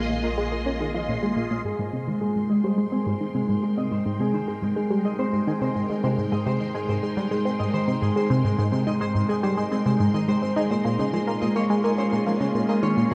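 A tight, driving sequenced synth riff sits up front in this cosmic, expansive excerpt of ambient space music at 106 BPM in Ab major, joined by swirling, warbling string-machine chords with phaser, a bright pulsing gated texture in the background, a deep sub bass that sounds only until 1.6 s, and a ringing, fingerpicked Celtic harp that enters at 1.7 s with filter-swept arpeggios, all set in a vast, echoing cathedral reverb with a cassette-tape character as the strings and texture fade in.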